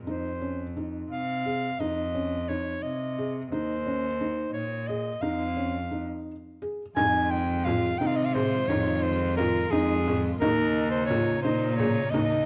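Contemporary chamber music in 5/8 with a restless, urgent mood, this excerpt pairs an up-front soprano saxophone melody in a smooth classical style with a rich, sul tasto bowed cello bass line and felt-muted upright piano arpeggios whose thick felt and audible action noise sound intimate, before a brief break gives way at 7.0 s to a lush, vibrato-laden symphonic string section holding sustained chords and a small, bright frame drum, both set back in the background of a dark production with light reverb.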